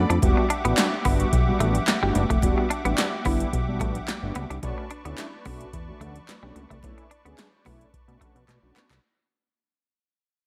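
Early-eighties boogie funk at 109 BPM in a straight 4/4, this short, late-night excerpt is danceable and fading out from its first second, moving from Em9 to Bm9 at 4.6 seconds. An overdriven electronic drum machine sits up front with a deep kick, punchy snare, metallic hi-hats and handclaps, the snare, claps and hats caught in a short gated room, and it closes with a fill at 8.5 seconds. Beside it, a plucky analog bass built from sawtooth and square waves gives a funky, fast-attack bottom line that decays. A semi-hollow electric guitar plays a clean, compressed, picked riff with subtle chorus, while a round, detuned synth brass patch carries the accompaniment with chorus, vibrato and a filter sweep on a dark, sustained tone. Above them a reedy musette accordion holds shimmering, vintage-sounding chords, and very quiet, high-tuned congas struck with hard hands sound distant in a large room, all within a digital ambience.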